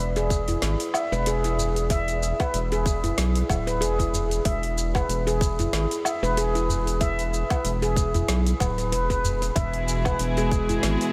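Organic downtempo at 94 BPM with a gentle 16th-note swing, meditative and hypnotic, this excerpt rests on a round, deep analog bass that pumps under sidechain while a ringing, mellow handpan plays echoing arpeggios up front over a tight, tape-touched electronic kick, an overdriven afro-pop kit of woody snare, metallic hats, shaker and woodblock, a small dry udu in the background and a very quiet bronze singing bowl with slow beating, until a dark, floating string section enters at 9.6 seconds with soft-attack sustained chords, all of it soaked in a huge, dreamy reverb.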